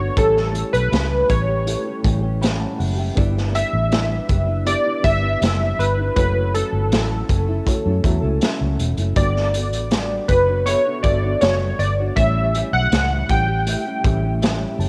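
Sunny and hazy, this short excerpt of indie bedroom pop drifts along at 80 BPM in 4/4, with airy, warbling analog keys carrying the melody up front through ensemble chorus, tape echo and cassette grit over chords moving from A7 through Em7, F#m7 and Gmaj9#11 back to A7. A round, foam-muted fingered electric bass and a raw garage drum kit with a boomy kick, saturated, pumping small-room sound and rolled-off top sit close alongside, the drums entering at 0.2 seconds. In the background, a fingerpicked nylon-string guitar with analog chorus and vibrato blends with a reedy, worn, slightly out-of-tune electric piano pulsing with fast tremolo, which takes a short fill at 14.0 seconds as the keys melody stops.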